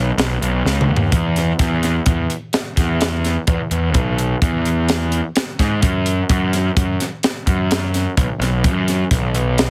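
In a straight 5/4, this bright, wistful math rock and midwest emo fragment opens on an overdriven, fuzz-soaked picked electric bass, up front and direct, before a crisp, airy fusion drum kit with a high-tuned snare and punchy kick joins at 0.2 seconds and plays a fill from 0.7 to 1.1 seconds into the longer second section, all kept dry and pressed into a heavily compressed radio sound.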